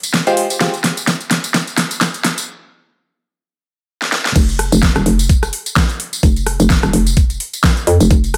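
A swung 4/4 groove at 128 BPM drives this bouncy, gritty bass house excerpt in F minor, cut from a longer piece. An overdriven, knocking electronic kick and a layered big-room kit with a huge snare, metallic hats, rim clicks, tambourine and crash cymbal carry the rhythm, the kit sitting up front with a small room ambience. Over an Fmadd9 harmony, a nasal, detuned sawtooth chord stab flashes briefly at 0.3 s, band-passed and bright with ring modulation, phaser, delay and sidechain pumping. The opening build-up is filled with drum fills, then a break begins at 2.5 s. At 4.4 s the drop lands and a hollow, punchy FM bass enters up front, its fast-attack, decaying notes overdriven and pumping against the kick while the harmony falls away to single bass notes. Light digital reverb lends a touch of space to the mix.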